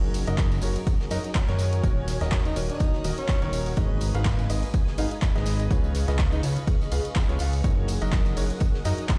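A swung 4/4 groove at 124 BPM drives this uplifting, euphoric piano house excerpt in F# major. An overdriven electronic kick sits up front from 0.4 seconds, joined by punchy analog drum-machine handclaps and hi-hat, a very faint gated 80s kit of hi-hat, ride and snare, and a tambourine in the background. A fat, detuned sawtooth bass with tube saturation sits prominently beneath a clear, woody upright piano riff carrying delay, and the bass, piano, strings and pad all pump with sidechain. Shimmering vintage string-machine violins hold sustained chords in the background through ensemble chorus, while a blurred granular cloud pad adds an evolving haze. From 1.1 seconds a breathy, intimate tenor saxophone plays a close-miked jazz-style solo with vibrato and delay over chords moving from F#6 through D#m7, G#m and C#7 back to F#6. The mix sits in a stone room reverb, as if played on a big sound system in a bare room.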